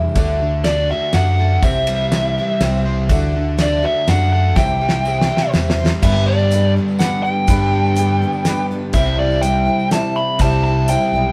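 Folk rock and heartland rock in a jangly 3/4 lilt, where a shimmering, octave-doubled twelve-string acoustic and a double-tracked, overdriven semi-hollow riff ride over an up-front electric bass and a dry, damped 70s drum kit with a fat snare, while a woody, slightly detuned upright piano sits in the background with a brief fill at 2.1 seconds, a very quiet vintage tambourine jingles, a biting, bright lead guitar sings the melody up high, and a drum fill at 4.6 seconds leads into the second section, all of it heard as a band playing live in a stone room with moderate reverb.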